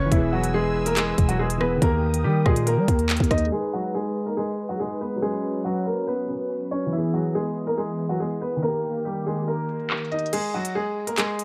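A bright, woody upright piano carries the melody through digital delay in this cold, ominous half-time drill piece at 141 BPM in G# minor, set over a dark, long-sustaining baby grand, a smooth, detuned sawtooth pad with chorus in the background, a growling, buzzy 808-style bass that drops out at 3.5 s, and a crisp, up-front electronic drum kit of hard-clipped kick, hi-hats, handclaps, rim clicks and crash, with a filter sweep running from 3.5 to 10.3 s before the kick is muted for the closing stretch.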